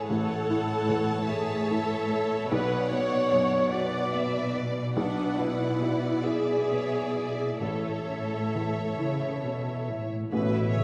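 Cinematic, hopeful and tender, this short rubato excerpt in 6/8 drifts at roughly 43-50 BPM in A major, where a lush violin section with soft-attack vibrato carries the melody over a clear second violin line, an up-front viola section, a felt-muted upright piano with audible action noise, very quiet ringing harp arpeggios and a cello bass with portamento, all bathed in a wet scoring-stage reverb, before a mellow French horn section and an expressive double bass section slip in at 10.3 seconds.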